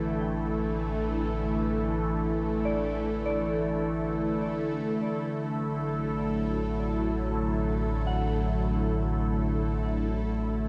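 Drenched in a vast, echoing cathedral reverb, this serene ambient passage in free time, tuned to A4 = 436 Hz, is cut from a longer piece. An evolving, detuned wavetable pad sits bright and up front, holding sustained chords through a phaser that move from Asus4 to Dadd9/A at 5.1 seconds. Beneath it a round, deep analog bass with tube saturation sustains a low A, while a soft, warbling FM synth bell traces mellow arpeggios in the background through chorus and a diffuse ambient delay.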